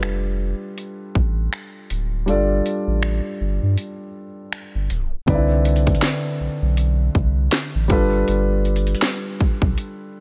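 A round, deep sine sub bass anchors this smooth, dreamy contemporary R&B excerpt at 80 BPM with a swung 16th feel in C major, sitting up front with a dark, mellow grand piano with audible action noise and a trap kit of finger snaps, metallic hats, a sharp snare and a hard-clipped kick that drops out from 2.3 to 5.3 seconds, through a tape stop starting at 4.9 seconds, all in a dry sound, before the harmony moves from G9 to Cmaj9 at 5.3 seconds and back to G9.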